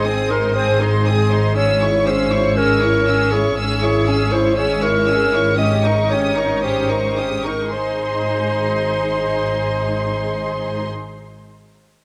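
Graceful and spirited, this fragment of a dramatic, fast romantic orchestral movement in straight 4/4 unfolds with classical poise. A symphonic violin section carries the melody high up, its bowed tone lush and smooth with vibrato, while a second violin group adds an expressive counter-line with soft attacks and portamento. A dark, distant clarinet, the most prominent voice in the mix, shares that second line from the outset. A full-bodied viola section supplies accompaniment beneath, and the bass is anchored by a close, bowed cello section and a clear, more distant double bass section, both sounding Ab an octave apart. The pace slows from 2.6 to 7.7 seconds as the harmony moves from Ab through Dbm/Ab and Eb7/Ab before returning home to Ab at 7.7 seconds. A moderate concert hall reverb gives the ensemble a roomy, spacious setting.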